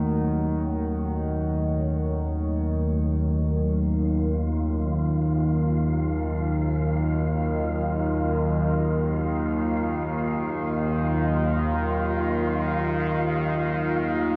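A low analog drone and a deep ambient pad open this dark, ominous dark ambient piece together, moving in free time in Eb minor. The drone sits up front in the low register, an evolving, wave-folded tone built from sawtooth, pulse and sine waves with pulse-width modulation and chorus, swelling in slowly and sustaining with a long release. Above it, the pad holds sustained chords in a moody, vintage, warbling voice of sawtooth unison and a sub octave, softened by chorus and shimmer reverb. At 4.1 seconds an airy, breathy, wind-like noise texture, tuned higher, drifts in with its own shimmer reverb. The harmony moves from Gbm to Ebmadd9 at 3.6 seconds, returning to Gbm near the close of this portion cut from a longer work. The whole sits in a cathedral-like reverb with a six-second decay and the worn, warbly pitch drift of old cassette tape.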